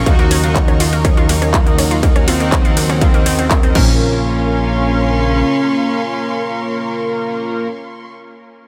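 A distorted electronic kick drum sits up front in this hypnotic, driving melodic techno excerpt, pounding at 122 BPM in a straight 4/4 with a layered techno kit of metallic hats, handclaps, rim clicks, ride and crash until about 3.9 seconds. The cut opens in a drop in Bb minor, tuned slightly flat, moving from an Ebm7 chord to Bbm, with a full-band accent at 3.5 seconds. A fat, thick, detuned analog bass pumps against the kick, while a round, nasal pluck spins arpeggios in the background with chorus and dub echo before falling away. A smooth supersaw carries the melody with a cassette-tape tint and dub echo, supported by bold, brassy synth stabs that add vibrato and a sub octave. Behind them, a lush, airy unison pad holds sustained chords and a warm studio string section adds expressive, bowed texture with portamento, lingering until 8.1 seconds, all of it breathing with sidechain pumping in a dry, close mix.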